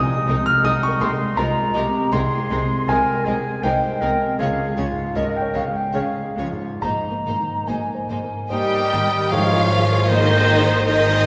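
Uplifting and hopeful, this rubato cinematic film-score passage in 3/4 opens with a warm, up-front grand piano with deep bass, a ringing, thumb-plucked harp, a mellow, hollow flute and a clear, punchy clarinet, joined at 0.3 s by a rich, expressive violin section carrying the melody over a smooth second violin line, very quiet distant violas, lush cellos and focused double basses, before a distant solo oboe and a very quiet horn section enter at 8.5 s and a dark, dry tam-tam sounds at 9.3 s with a band accent, set in a reverberant church or concert hall.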